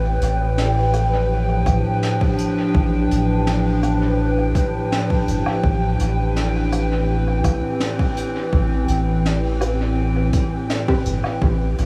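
A straight 4/4 pulse at 83 BPM carries this meditative, spacious ambient dub excerpt in A minor, with a punchy, overdriven electronic kick arriving at 1.7 seconds alongside jazz brush drums whose hi-hat, snare and woodblock ring through dub echo. A warbling, lo-fi tape-like pad holds sustained chords up front, colored by chorus, phaser and its own reverb, moving from G7/A to Am7 at 5.6 seconds. A soft, round dub sub bass sits deep between G1 and A1, while a breathy, wind-like tuned noise texture drifts dark in the background with built-in reverb. A very quiet, muted filtered chord stab adds short plucked accents from 0.9 seconds. The whole mix is dreamy and soaked in a huge reverb with an 8.0-second tail, set against a small room ambience.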